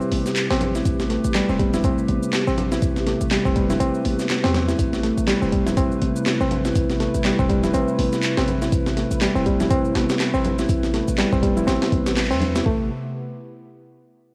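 Lo-fi and cassette-worn with light reverb, this funky, energetic breakbeat excerpt is driven by a gritty, compressed sampler-style kit with a thumpy kick and swung sixteenths, while a reedy, slightly out-of-tune electric piano riff with tube saturation and analog delay sits up front over a warbling, nostalgic pad pumping with sidechain, a deep, boomy 808-style bass, overdriven electronic shaker and handclaps, and very quiet ringing congas, all holding an Am9 chord until a band accent at 12.2 seconds.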